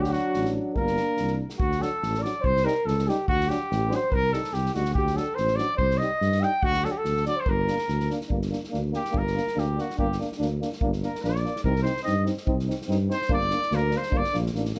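Close, detailed microphones and light reverb frame this fiery, restless slice of Balkan brass band folk in a straight 2/4, with a mellow trumpet up front carrying the melody over a second line from a mellow flugelhorn that drops out at 8.1 seconds. A clear, roomy euphonium and a dark trombone supply background accompaniment, while a dark tuba anchors the bass up front and an acoustic drum kit played with bundle sticks adds a punchy kick and medium-tuned snare. From 8.3 seconds the trumpet takes a solo through to the end, its light vibrato and classical poise set against the rhythm section.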